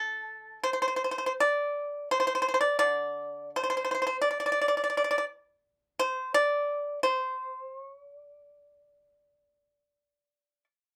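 A solo pipa, bright and percussive with a crisp fingerpicked attack, carries this brief, contemplative passage of Chinese traditional music, spanning from D3 to D5 in a flexible rubato that hovers around 71-88 BPM in 4/4. Recorded up close and in detail with only light reverb, the instrument sits dry and up front, its elegant phrasing unfolding over about 10.6 seconds as a fragment of a longer piece.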